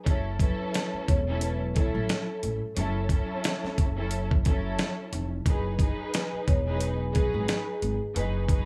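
A gritty, compressed sampler-style drum kit sits up front in this dark, reflective boom-bap hip-hop excerpt, its thumpy kick, fat snare and hi-hat swinging at 89 BPM in F# dorian beneath a woody pizzicato upright bass. Lush bowed strings with expressive vibrato and a smooth top fill out the accompaniment, filtered at both ends, as the harmony moves from F#m7 to Emaj7 at 5.5 seconds. A mellow, ringing vibraphone played with soft mallets enters at 0.4 seconds with a slow motor vibrato and a slapback echo, all set in light reverb.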